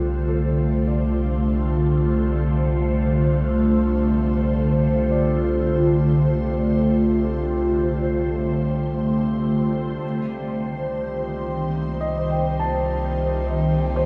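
An ethereal, airy pad sits up front in this reflective, melancholic ambient excerpt in free time, its sustained chords from Dm7/C to Cm7 at 10.0 s colored by ensemble chorus, built-in reverb and phaser. Beneath it a round sine sub bass holds a low C, while a felt-muted upright piano plays intimate arpeggios through diffuse ambient delay and a reedy, breathing pedal harmonium drones, both fading in across the full 14.1 seconds. The dreamy mix is soaked in a lush hall reverb.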